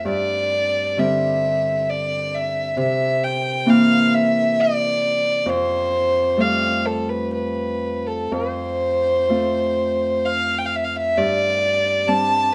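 A dark, woody fiddle leads this Celtic slow air, a single bowed player sul tasto with light vibrato, carrying the melody up front from A4 to A5. Beneath it, an acoustic Celtic harp, thumb-plucked and ringing, supplies the accompaniment from F2 to F4, also close in the mix. The mood is wistful and pastoral, moving in 3/4 at a rubato pace around 61-68 BPM. The harmony passes through Gsus4, C7, Fadd9 and F before settling on Csus2/G at 11.2 seconds. Moderate studio reverb and a dark, warm production frame this brief section cut from a longer piece, with both parts sounding throughout its 12.5 seconds.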